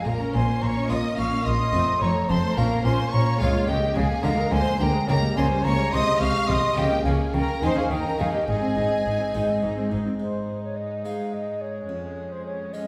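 This classical, baroque-style concerto movement in 6/8 is cut from a longer piece, and its mood is stormy and driving. A concert flute with a pure, straight tone and crisp attack carries the melody alongside a smooth, even chamber violin section. Meanwhile a lush, expressive studio violin section plays a second line beneath them. A clear, intense viola section and a focused cello section sit in the background, and a double bass section with a soft attack anchors the bass until about 10.0 s. A bright, dry, close-miked harpsichord with one set of strings adds plucked accompaniment from the background. The group is heard from further back in a recital hall with wet reverb, and at 10.2 s the music moves into a new section.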